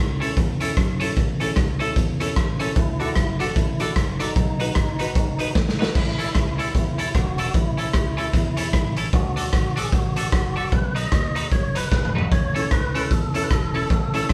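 Woody upright piano stabs and a round, foam-muted fingered bass open this cheerful, joyful ska cut from a longer piece, with a brilliant, clean, twangy electric guitar joining almost at once on picked, compressed accompaniment with a touch of vibrato. The raw garage drum kit sits up front, its tight kick, medium-tuned snare, rim clicks, hi-hat, crash and toms sounding saturated and gritty with a rolled-off top. At 2.8 seconds a fat, lightly overdriven tonewheel organ takes the melody, its key click and fast rotary speaker giving it a spinning shimmer. The piano drops out at 5.9 seconds as the chord pattern moving from A to D to B starts over, then returns at 12.6 seconds. The swung eighths and quick drum fills keep the groove bouncing, while the bass stays dark and in the background under a live, one-room band sound with moderate studio reverb.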